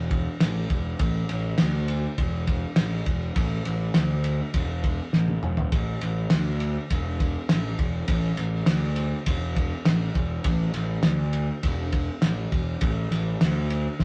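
Garage rock in a rough rehearsal-room cassette recording, this rowdy, raw excerpt pairs a fuzz-laden picked electric bass, overdriven and saturated through tubes, with a cloth-damped, thuddy drum kit, both sitting up front. The kit has a fat snare, tight kick, dark ride cymbal and toms, its top end rolled off in a small room with light reverb. A drum fill breaks through at 5.1 seconds.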